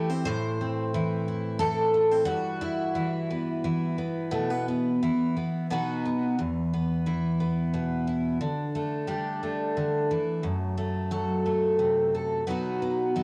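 A lone picked twelve-string acoustic guitar, shimmering and octave-doubled with a full-bodied jumbo tone and a cassette-tape grain, sits up front in a wistful, reflective folk piece in 3/4 in E minor at 89 BPM, moving through chords such as Am, Em/G, Dsus4 and F#dim before settling on B near 12.5 seconds, all bathed in a wet spring reverb from a home cassette recording in this short cut from a longer piece.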